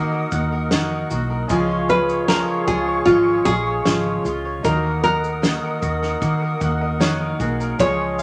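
This excerpt of sunny, easy-going acoustic pop opens with a bed of picked steel-string acoustic guitar, dark and full-bodied, alongside a bright, woody upright piano set in the background, a pure flute section holding soft-attack chords with vibrato, mandolin arpeggios with a round double-string tone, and a dark, foam-muted electric bass that sounds amped and punchy. At 0.3 seconds a loose indie drum kit joins with a tight kick, medium-tuned snare and shaker, its small-room sound rolled off at the top. The tempo sits at an unhurried 76 BPM in a straight 4/4, with the harmony moving from Eb minor to Db and back to Eb minor. At 1.9 seconds a fingerpicked nylon-string guitar enters up front to carry the melody, its deep classical tone full of body, with audible finger squeak. The whole blend sits in a wet studio ambience that gives the layered acoustic textures a gentle, open glow.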